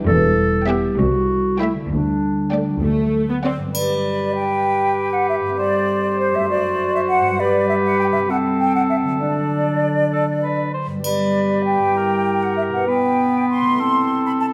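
A playful, whimsical cinematic film cue in G major, this short excerpt moves in a straight 6/8 at 66 BPM with a magical, quirky air. A ringing concert harp lays down arpeggios throughout, joined from the start by a roomy clarinet carrying a soft-attacked second line, while a bright bowed double bass section and a very quiet, distant cello section anchor the bass through the opening 3.6 seconds. In that first section the strings fill out the texture: a lush viola section sits up front in the accompaniment, a clear studio violin section adds a smooth second line, and a focused chamber violin section holds the melody in the background. At 3.7 seconds the strings fall away and the second section brings in an airy small flute group and a vintage-toned cor anglais with light vibrato, both adding second lines over the harp and clarinet. A bright, small-room triangle sparkles in two brief touches, and a moderate scoring stage reverb gives the whole cue a gentle sense of space as the harmony wanders through a diminished colour on its way to the close.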